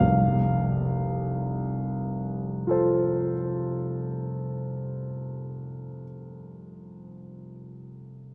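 A grand piano, natural and up front, sounds a single F major harmony across a span from F1 to F5, in a dreamy, hazy impressionist classical solo moving freely in rubato at 22 BPM in dotted quarters, in 9/8 and tuned to A4 = 439 Hz. A wet church reverb with a 3.6-second decay surrounds the warm instrument, blurring its tones into a soft halo. The passage is cut from a longer piece and plays for 8.3 seconds.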